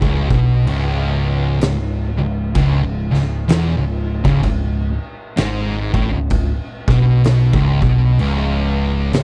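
A slow 4/4 groove with a light swing on the eighth notes gives this ominous, hypnotic stoner and doom metal clip its lurching, trance-like pull. Two thick fuzz guitars play the riff low in their range for the whole 9.2 seconds: one has a warm, distorted tone, while the other, dark and set in the background, thickens the wall of fuzz beneath it. An overdriven, picked electric bass sits up front, round and amped, adding weight an octave below. An oversized, low-tuned acoustic drum kit drives the pulse with a boomy kick, a fat snare and crashing cymbals, its saturated, gritty sound carrying a bright stone-room character that pumps around the hits. The whole passage rests on a single C#5 chord, and the overall mix is dry, with little reverb, as the clip is cut from a longer piece.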